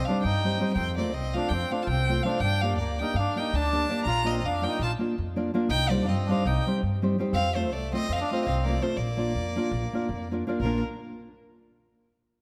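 A moderate concert-hall reverb surrounds this wild, exuberant Balkan wedding-band excerpt in 9/8, where an intimate, up-front violin carries the melody with vibrato and an airy sul tasto bow over a reedy, hollow accordion second line, fingerpicked nylon-string guitar accompaniment with audible finger squeak, and a thumpy, woody pizzicato upright bass on gut strings, moving through Cm, F, Gm and Bb.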